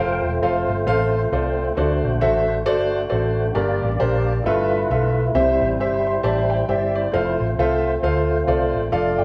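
A swung 4/4 gospel groove at 134 BPM in F major carries this brief, uplifting and reverent piece, cut from a longer performance, with warm, woody upright piano playing the accompaniment up front, adding a fill from 5.8 to 7.1 seconds over a progression that moves from F through D7, Gm, G13 and C before landing back on F. A tonewheel organ holds fat, lightly overdriven sustained chords through a slow rotary speaker and chorus vibrato with a touch of key click. A dark, round, punchy hollow-body electric bass sits up front underneath, all of it played live in one room and bathed in a large studio reverb.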